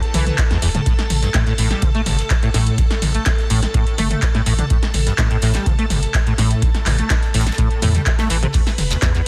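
A squelchy, resonant sawtooth acid bass sits up front in this raw, gritty acid house passage at 125 BPM in straight 4/4, its filter sweeping across a riff colored by chorus, digital delay and sidechain pumping. Beneath it, a deep, round sine sub bass holds the low end, also pumping alongside a deep analog kick that arrives at 0.4 s. An electro drum machine supplies a punchy snare, metallic hats, handclaps, toms, ride and crash, joined by a very quiet, dry acoustic 70s kit with a fat snare and ride. A lush, vintage string machine with a sub octave, ensemble chorus and sidechain pumping holds slow-attack chords moving from E5 to A7(no3) and back to E5. A grainy, close shekere enters at 8.5 s in this short cut from a longer piece, which has little reverb and a dense, heavily limited master.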